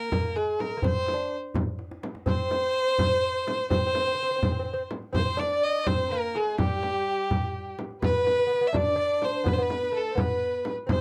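In a straight 6/8, this soulful, longing fragment of Persian modal ensemble music sets a rich, smooth solo violin with vibrato up front over a delicate, fingerpicked gut-string lute, a small, bright, compressed frame drum and a tight tombak played with hard hands, and a brief drum fill at 1.8 s ushers in a very quiet, lush symphonic violin section at 2.3 s, heard in a dry, close 1970s-style studio sound.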